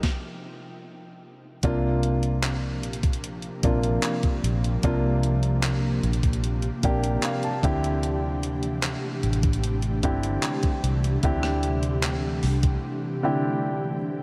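A warm grand piano and a clean, electronic 12-bit drum machine open this late-night, sensual contemporary R&B excerpt. The drums sit up front with a sampler-style, small-room character, built from a thumpy kick, a medium-tuned snare, hi-hat, rim click and handclaps. At 1.6 seconds a dark, foam-muted fingered electric bass enters, round and punchy in the low register, as the harmony settles on C9sus4 before moving to D9sus4. From 2.5 seconds a mellow, airy pad of detuned sawtooth and triangle tones fades in with a slow attack and ensemble chorus, holding sustained chords. The short-sustained piano stays forward and steps out with a brief fill midway, then the drums and bass stop at 12.8 seconds, leaving piano and pad for a short break, all bathed in a huge ambient reverb that gives the mix a dreamy atmosphere.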